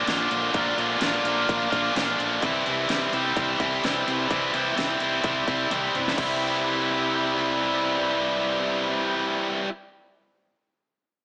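A bright, double-tracked distorted electric guitar sits up front, playing a confident, sunny classic rock riff in C major at 128 BPM over a round, growling overdriven fingered bass and a layered electronic drum kit with a punchy kick and huge snare. The chords move from Bb to C at 2.4 seconds, and the drums fill at 5.7 seconds and stop at 6.3 seconds, all heard with light reverb and a small-speaker sound in this cut from a longer piece.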